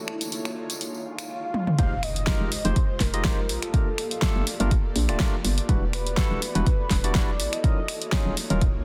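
A deep, tape-warm electronic kick sits up front in this hypnotic deep house excerpt at 123 BPM, landing with the drop at 1.8 s alongside a hollow, bouncy FM bass, a barky, lightly overdriven tine electric piano with vintage 12-bit grit and dub echo, and a velvety, mellow synth lead with chorus and portamento, all over a layered drum kit of finger snaps, hi-hat, fat snare and toms, while an airy, breathy pad and a blurred granular cloud pad pump with the sidechain in the background. The opening brings a jingly, dry tambourine, a faint, silky string machine and a background electronic swell that gives way to an impact at the drop.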